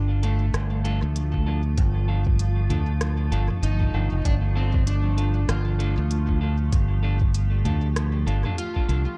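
A punchy, up-front fingered electric bass anchors this hazy, deep ambient dub fragment, cut from a longer piece, sitting low over a D minor chord at 97 BPM in 4/4 with a swung sixteenth-note feel. Above it, a dark, slightly broken-up slide guitar played with fingerpicks carries the melody through a dub echo, while a blurred, evolving granular pad holds slow-attack sustained chords in its own built-in reverb. A clean, picked semi-hollow electric guitar adds hollow-bodied stabs from 0.2 seconds, also sent into dub echo. The drums come from an organic electronic kit with crisp hats, rim clicks and toms caught in echo, joined at 1.3 seconds by a muffled, thumpy, tape-warm kick. The mix carries little reverb beyond the pad's own and leans heavily on echo.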